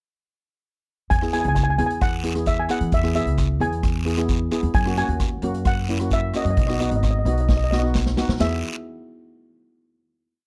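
Calypso in E major at 131 BPM with a festive, sunny mood, where a mellow, shimmering double-second steel pan played with medium rubber sticks carries a free, unrepeating melody over a second steel pan's metallic triad chords, a woody, thumpy pizzicato upright bass on gut strings playing a syncopated figure, a boomy, airy street-band drum kit with dark cymbals keeping a calypso groove, and a quiet, raspy guiro, all in a dry, close 1970s-style studio sound, with a drum fill from 7.5 seconds leading to a final E chord at 8.4 seconds.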